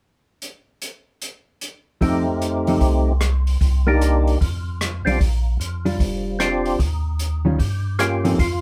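Greasy and bluesy, this soul jazz organ trio swings at 150 BPM in 4/4 in F mixolydian, cut from a longer piece. An acoustic drum kit opens alone at 0.4 seconds with hi-hat, rim click and a boomy kick in a small-room sound. At 2.0 seconds the rest of the band arrives: a fat, percussive tonewheel organ carries the melody with third harmonic percussion, key click, chorus vibrato and a slow rotary speaker. Beneath it, a second tonewheel organ supplies a piping, scooped bass line with the same clean rotary shimmer. A dark, compressed hollow-body electric guitar, played fingered, comps through F7, Cm7, Fsus2, Bb6 and Eb9, and the whole group sits up front with light reverb, like a band playing live in one room until the organs stop at 8.6 seconds.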